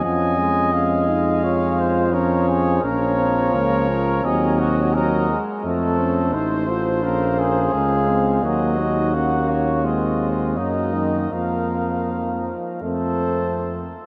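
A mellow tuba sits up front in this solemn, grave brass quintet passage, laying down a smooth-topped bass line beneath the ensemble. Above it, a punchy cornet carries the melody with light vibrato and a warm edge, while a distant, roomy trumpet traces a second line. A mellow French horn and a brilliant, far-off trombone, both touched with light vibrato, fill out the accompaniment in the background. The playing is classical in style, with a flexible, rubato feel over a 4/4 metre, and all five parts sound together from start to finish. A huge, wet reverb places the group in a vast, echoing space, with a tail lasting 7.9 seconds. The harmony moves through minor and diminished colours before settling from Fsus4 at 11.3 seconds onto F at 12.8 seconds, in this short passage cut from a longer work.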